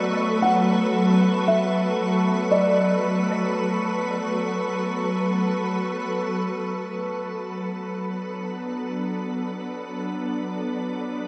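This ambient fragment drifts at 57 BPM in B minor, with a spacious, melancholic mood and a dreamy, reverb-soaked plate sound. A bright, organ-like pad sits up front and holds sustained chords throughout, its pure tone thickened by ensemble chorus, moving from Bm9 to Bm7. A felt-muted upright piano carries a short, intimate melody in its upper register through analog delay, its boxy, dark tone ending at 5.7 seconds. Beneath it, a very quiet, evolving analog drone adds mellow low support, while a breathy, wind-like noise texture floats above with chorus. At 6.8 seconds the drone and wind layer give way to a barely audible synth bell, whose warbling, vintage arpeggios shimmer faintly beside the pad.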